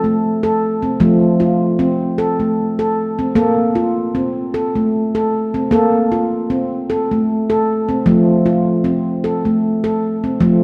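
World meditative music for solo handpan, calm and dreamy, moving at 76 BPM in a gently swung 3/4 in F major. The nitrided steel handpan sits up front with a ringing, mellow tone under soft fingertips, ranging from F3 to A4 as the harmony shifts from F to Bb5 at 3.4 seconds and back to F at 8.1 seconds. A lush concert hall reverb with a long tail surrounds it in a dark production, and the passage is cut from a longer piece.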